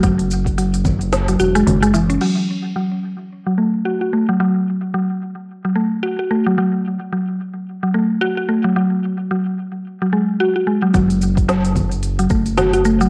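Organic downtempo with a meditative, hypnotic mood, this short cut from a longer piece moves at an unhurried pace with a lightly swung sixteenth-note feel. A woody, mallet-like FM synth pluck sits up front throughout, playing mellow arpeggios with a fast attack and quick decay, colored by chorus, tape echo and cassette grit. For the opening moments a round, dark analog bass with sidechain pumping joins an overdriven, deep electronic kick and a tape-softened kit of congas, crash, crisp hats, shaker and a woody snare, all re-recorded in a large room. At 2.2 seconds the bass drops out and the kit follows a moment later, leaving the pluck on its own under a filter sweep. Its harmony shifts briefly to a suspended chord before the bass and drums return at 10.9 seconds. A moderate spring reverb and a homemade cassette sound give the whole piece a hazy, intimate character.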